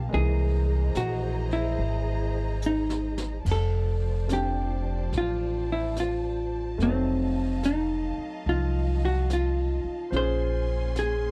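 A dark, up-front hollow-body electric guitar carries the melody of this tender, romantic swing ballad from the first moment, over pizzicato upright bass with a woody, thumpy tone, a clear, slightly detuned upright piano in the background, and lush bowed strings holding soft-attack chords with vibrato. Brushes on the drum kit, with dark cymbals and a boomy kick, come in at 0.1 seconds and play a fill from 2.6 to 3.5 seconds, as the harmony moves from C7alt to F6 and later settles on Bbm9. The sound is dry and close, like a 1970s studio session, in this fragment cut from a longer piece.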